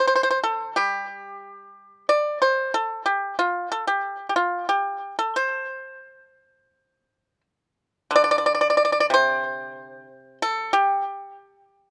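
A solo pipa, played with fingerpicks, sits up front in this short excerpt of Chinese traditional music, its dry, percussive attack ringing across a range from C3 to D5 in the C zhi mode. The mood is flowing and serene, with a rubato feel loosely around 81-96 BPM in 4/4, and the music moves into a new section at 8.1 seconds. Recorded outdoors with little reverb, the instrument sounds close and immediate.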